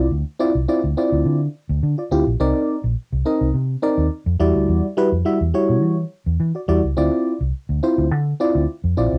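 A glassy FM electric piano carries the accompaniment in this short excerpt of early-eighties boogie funk, its bell-like attack blooming into a full-bodied tone that decays under a shimmer of chorus and a noise layer. It sits up front, carrying the harmony through minor ninth chords that move from Dm9 to Cm9 and Em9 before returning to Dm9 near 7.0 seconds. Beneath it, a vintage foam-muted fingered electric bass plays dark, round, amped notes, also close and present in the mix. Both parts run together for the full 9.2 seconds of this funky, late-night groove in straight 4/4. The piano's cassette-tape colouring and the modest booth ambience give the home recording an intimate, slightly worn character.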